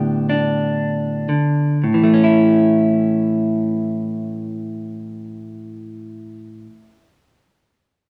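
This folk piece in 6/8 has a nostalgic mood, carried by a lone clean electric guitar whose warm, picked tone sits up front from the first moment until it falls silent at 7.1 seconds. The opening slows down through its first 1.8 seconds on a G/A chord before settling onto A as a new section begins. Moderate small-room reverb gives the sound the intimate ambience of a live room, and the passage is cut from a longer piece.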